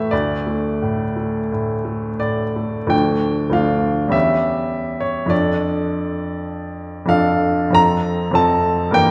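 Lyrical and warm, this romantic character piece for solo piano in D minor moves with a rubato feel at roughly 80-103 BPM in 4/4, cut from a longer piece. A clear, intimate baby grand sits up front with long sustain and audible action noise, ranging from D2 to Bb5. It opens on a D5 and at 2.9 seconds moves into a new section that passes through Dm, C#dim/E and Dm/F before settling on F at 7.8 seconds, all carried by a wet concert hall reverb.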